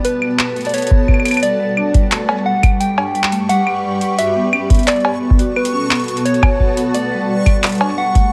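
A soft struck FM synth lead with a round, warbling tone carries the melody through chorus and digital delay, over a blurred granular cloud pad with 12-bit sampler grit and a ringing vibraphone playing arpeggios through tape echo. This playful, glitchy IDM excerpt moves at 87 BPM in G lydian, with an analog drum machine of claves, cowbell, handclaps and metallic hi-hats. A deep, up-front electronic kick enters at 0.9 seconds, and a faint, dreamy reversed texture joins at 2.4 seconds, all set in a light digital ambience.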